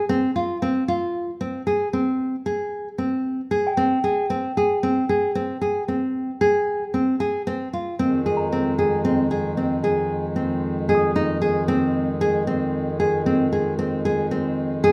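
A moderate recital-hall reverb surrounds this pensive, hypnotic piece of contemporary chamber music in 7/4, cut from a longer work. An up-front, full-bodied nylon-string guitar plays fingerpicked classical arpeggios throughout, while a soft, bell-like glockenspiel struck with rubber mallets adds a dark, ringing texture in the background from 3.7 to 12.2 seconds. At 8.0 seconds a close, dry pedal harmonium with a reedy, breathing tone joins in with sustained chords as the harmony shifts to a fuller seventh chord.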